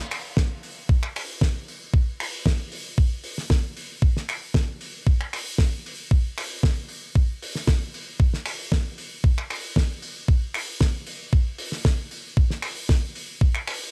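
Sleek and cosmic, this nu-disco excerpt moves at 115 BPM in a straight 4/4, built entirely from drums. An electronic kick with a thumpy, tape-toned, sampler-style punch sits up front from 0.4 seconds, while a damped 70s kit enters at 0.1 seconds with finger snaps, hi-hat and a fat, dry snare whose top end is rolled off. Both parts carry a small room ambience, yet the overall sound stays close and nearly free of reverb.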